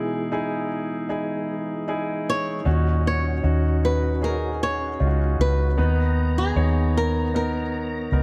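A straight 4/4 pulse at 77 BPM carries this heartbroken, longing pop fragment in Eb minor: a fingerpicked flamenco guitar with fresh strings and digital delay sings the melody over an intimate, polished concert grand piano with audible action noise and long sustain, while a tonewheel organ holds clean sustained chords in the background through chorus vibrato and a slow rotary speaker, and a round, punchy, foam-muted electric bass joins up front at 2.7 s, the whole set in a small room with light reverb and a dark production.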